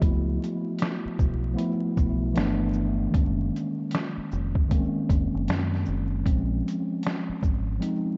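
A muffled, pitched-down sampler-style drum kit with a thumpy kick, medium-tuned snare, finger snaps, hi-hat and shaker opens this reflective, nostalgic lo-fi hip hop fragment together with a round, punchy dub fingered electric bass and a mellow tine electric piano through low-pass filtering and analog delay, moving through chords like Db7alt and Gb69 in a swung, echo-heavy mix dusted with vinyl crackle and softened highs.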